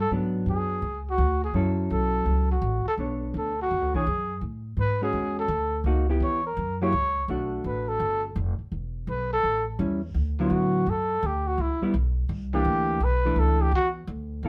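Recorded live in one room with a moderate studio reverb and a faint mains hum, this cool, late-night fragment of small-group swing and bop is cut from a longer piece. A breathy, dark trumpet with light vibrato carries the solo melody up front until 13.9 s, while a woody pizzicato upright bass holds down the low end and a clean, fingered hollow-body electric guitar supplies the chords. The swung changes move through rich minor and altered harmonies before the second section opens at 10.1 s.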